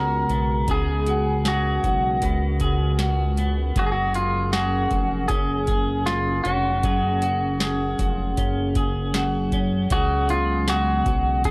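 A booming analog drum machine comes in at 0.3 s with a straight, unhurried 4/4 pulse of deep kick, crisp snare and metallic hats, overdriven and placed up front with the roomy grit of a small space. Beneath it, a chorused synth bass sits close and glossy, its retro pulse and sawtooth tones given a plucked filter attack and a touch of tube saturation. A warbling, tape-like pad holds dark, nostalgic chords through chorus and its own reverb, moving from C#7sus4 to F#add9 at 3.8 s and back to C#7sus4 at 9.9 s. Two clean, picked electric guitars float on top: one carries a warm melody through tape echo, while the other plays compressed, twangy arpeggios bathed in lush chorus and tape echo. This floating, dreamy dream pop fragment, cut from a longer piece, has a dry, gritty hardware character with only light reverb around it.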